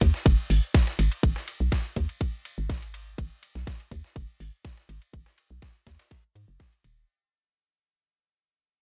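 A tight, layered electronic kick sits up front with a tape-warm character, driving this clinical, sparse minimal techno cut in G# minor at 123 BPM, while a hollow, bouncy FM bass with a fast attack and mellow decay pumps against it from D#1 to G#2. Behind them, a gritty, compressed sampler-style kit adds a fat, high-passed snare and filtered, pumping hi-hat and ride, and a very quiet, overdriven electronic hi-hat with a metallic, small-room tone ticks underneath. The mix is dry and close, and the whole short section fades out across its 7.1 seconds.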